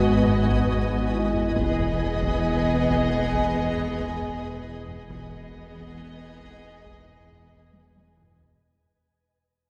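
A mysterious, ominous suspense cue cut from a longer film score opens with everything sounding at once: dark, woody violin sections bowing sul tasto with vibrato, a warm viola section close and intimate beneath them, a distant French horn section holding chords, and a flickering, grainy texture sustaining chords above, all moving from Abm7 to Emaj7 at 1.6 seconds. Dark cello and double bass sections anchor the bottom alongside a deep, punchy sine sub bass drone, while a metallic, ringing vibraphone with soft mallets and a taiko ensemble struck with heavy sticks sit in the background. The whole passage fades out in a wet, roomy scoring-stage space, heard from further back, with a taiko fill arriving at 7.7 seconds.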